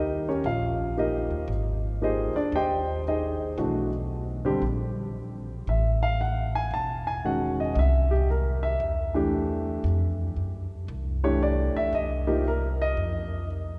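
Swung eighth notes in 4/4 give this short jazz passage, cut from a longer piece, a warm, swinging lilt. An intimate grand piano carries the melody, its action noise audible and its short-sustained notes sitting up front. Beside it, a woody pizzicato upright bass on steel strings holds the low end, both playing from the start until the piano drops out at 13.5 seconds and the bass at 13.8 seconds. A cathedral-like reverb with a long 4.5-second tail fills the church or concert-hall space around the pair as the harmony drifts from Eb7 through Abmaj7, Amaj7 and Fmaj7 to Cm7.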